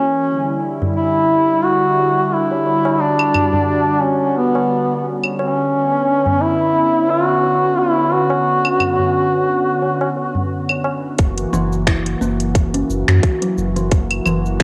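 A mellow, up-front duduk with vibrato and scooped notes carries a folk-style melody through tape echo over a smooth, detuned analog pad whose chorus and sampler grit pulse with sidechain pumping, while low-tuned, dry tabla joins at 0.5 seconds and an electronic kit of claves, finger snaps, metallic hats and shaker enters at 3.2 seconds. This hypnotic, organic downtempo cut moves at 88 BPM with a light sixteenth-note swing in F# phrygian dominant, drifting from Em7 to Bmadd9 before landing on F#7 at 11.2 seconds. By then the duduk has already fallen away, and a round sine sub bass and an overdriven tight electronic kick join the pad and kit, followed at 11.5 seconds by a woody, band-limited kalimba with analog delay. A wet spring reverb and the character of a home cassette recording give the piece its hazy, vintage glow.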